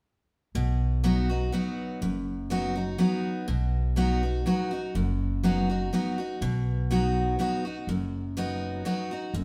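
This short cut from a longer bluegrass piece opens with an upright bass at 0.5 seconds, joined almost at once by a picked steel-string acoustic guitar at 0.6 seconds, both carrying on to the end at 9.4 seconds. The mood is lively and driving, moving at 123 BPM in a straight 3/4 feel centred on B major. The bass is plucked pizzicato with a woody, warm tone, anchoring the low end in a narrow register. Up front, the dreadnought guitar sounds bright and full-bodied as it supplies the accompaniment across a broader range. The two play live together in a stone room whose lingering reverb gives the pair a natural, spacious ring.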